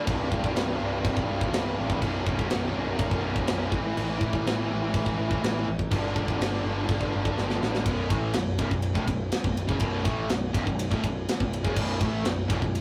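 A bright, double-tracked distorted guitar riff leads this heavy, relentless metal excerpt, driven by a punchy fuzz-overdriven picked bass and an up-front acoustic kit with tight kick, medium-tuned snare, bright crash and ride cymbals, and a drum fill at 7.4 seconds that ushers in a new section at 7.9 seconds, all captured in a rough rehearsal-room sound with warm saturation and modest booth ambience.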